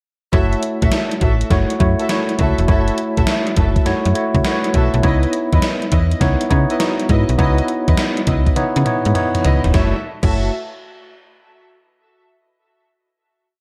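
A punchy, bouncy new jack swing piece opens at 0.3 seconds with the full band together: a gated 80s digital drum machine, a slap-like FM bass, a tine electric piano and a muted string section. The drums sit up front with a thumpy kick, a gated-reverb snare, hi-hat, crash and toms, playing a hard-swung beat with a tape-warm, sampler-style character heard in a large room. Alongside them, the snappy FM bass plays a bouncy, swung synth-funk line with a metallic attack, decaying notes and muted ghost notes. The clean electric piano, also up front, plays syncopated chord stabs with grace notes, while the dark, veiled strings add short, bowed, con sordino stabs with vibrato and tape echo. The verse moves from F#m7 to C#m9, and a drum fill at 8.6 seconds leads into a final F#m7 chord at 9.7 seconds, with a light reverb over the whole mix.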